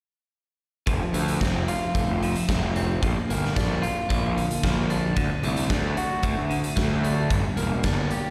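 At 0.9 seconds the full band comes in together: a clean, compressed electric guitar picks chorus-drenched arpeggios with slapback echo and plate reverb, over a growly, fuzz-overdriven picked bass and an up-front acoustic kit with a fat snare, punchy kick and hi-hat. This is an anthemic, bittersweet stretch of quiet-loud alternative rock at 112 BPM in F major, moving through F, Bb, D and Gm. It sounds like a live gig heard through the venue's PA, with recital-hall reverb around the band.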